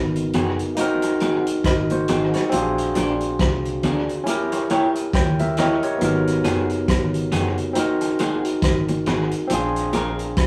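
A rough rehearsal-room recording with moderate studio reverb captures this bittersweet, smooth lovers rock reggae passage at 69 BPM, its sixteenths swung and its harmony moving through G#m7, G#7, A#7 and D#7b9. Up front, a bright, barky tine electric piano, lightly overdriven through a combo amp, carries the accompaniment and plays a fill from 4.7 to 6.0 seconds, while a dark, foam-muted fingered bass sits round and punchy underneath. A vintage kit with a punchy kick, hi-hat, rim click and rolled-off top is treated with dub echo, as are low-tuned, hard-handed bongos in the background, and an electric guitar through a small old amp adds slightly broken-up, compressed stabs.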